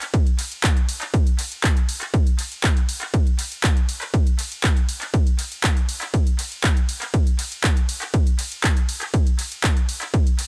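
Dark and dramatic, this techno fragment, taken from a longer piece, runs in a straight 4/4 pulse led by a heavy, overdriven electronic kick drum that sits up front from 0.1 to 10.2 seconds. Around it, a layered, produced techno drum kit of handclaps, hi-hat and ride cymbal carries its own grit and tape echo. The whole sits in an echo-heavy digital ambience that lends the beat a cavernous, shadowy air.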